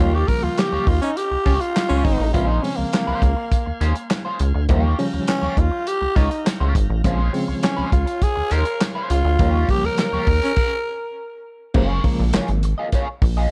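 Cool and driving, this short funk cut from a longer piece rides a straight 4/4 groove over Eb9 and Bbm9 chords before shifting to Gbmaj9 near the end. A growling tenor saxophone takes the solo up front, its raspy, gritty tone carried by tape echo, while a breathy baritone saxophone adds a whispered second line on a single note from 1.0 to 2.3 seconds and again briefly. Underneath, an electric guitar at the edge of break-up plays accompaniment through a wah, and a barky reed electric piano fires overdriven stabs with fast tremolo and tape echo. A tonewheel organ holds smooth chords in the background through a slow rotary speaker, and a rubbery, hollow square-wave bass sits up front. The soul drum kit, with dark cymbals, tight kick, snare, hi-hat, handclaps and crash, carries vintage 12-bit sampler grit, and the band hits accents together at the start and again before a stop at 10.6 seconds, all within light reverb.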